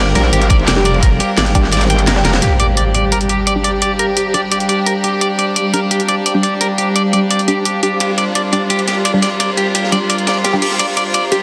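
Aggressive and dark, this cut from a longer technical drum and bass piece runs at 172 BPM in G minor, with a reedy, gut-string chamber string section holding sustained chords and a bright, clean electric guitar picking arpeggios with dub echo, both pumping against the sidechain beneath a blurred granular cloud pad. A distorted, metallic wobble bass snarls up front until 2.4 seconds, where a drum fill and band accent give way to an electronic impact. Muted, detuned dub chord stabs with phaser sit in the background, a filter sweeping through them from 2.4 seconds on, while an up-front drum and bass kit with a cracking snare drives throughout, a knocking kick appears briefly early on, and a gritty, saturated breakbeat kit returns at 8.0 seconds, all inside a lush hall reverb and a dense, heavily limited master.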